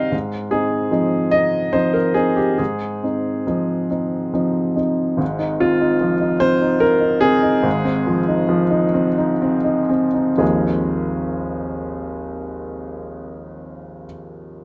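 A warm, woody upright piano plays alone and up front, its action noise audible and its long sustain framed by light reverb, in this tender, intimate fragment of neoclassical minimalist music in 3/4, moving with a rubato feel at around 59-77 BPM, opening on an Fm7/Ab chord, ranging from Ab1 to G5, and slowing down between 3.9 and 10.4 seconds within its 14.6 seconds.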